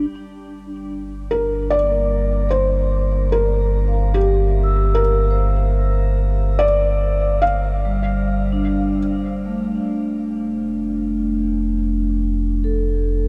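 A slow, straight 3/4 pulse at 74 BPM carries this melancholic, spacious ambient piece in G dorian, cut from a longer work, as a round, deep analog bass holds low and a vibraphone played with soft mallets fades in with ringing, metallic arpeggios. From 1.3 to 9.0 seconds a felt-muted upright piano plays a dark, intimate melody, its audible action noise and thick felt giving a vintage softness. Both vibraphone and piano trail shimmer reverb and tape echo inside a vast, echoing space, while the harmony moves from Gm7 to F at 9.8 seconds.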